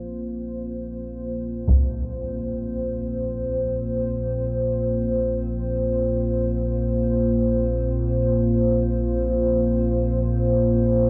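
Dark ambient drone in free time, this unsettling, ominous passage is cut from a longer piece and settles on a Bbsus2 chord tuned slightly below standard pitch at A4 = 439 Hz. A deep rumbling drone holds the low end throughout the 11.1 seconds, its nasal, detuned sawtooth-and-triangle tone carrying built-in reverb and subtle chorus, with a fade-in on the synth drone across the whole span. Above it, a dark analog pad sits up front with sustained chords, blending square, sawtooth and sine waves with a sub octave and a wave-folded edge, softened by slow attack, long release and subtle chorus. A brief taiko ensemble figure sounds from 1.7 to 1.9 seconds, heavy sticks in a small room muffled by a low-pass filter. The whole is bathed in a huge, wet ambient reverb with a 7.9-second decay and carries the character of cassette tape.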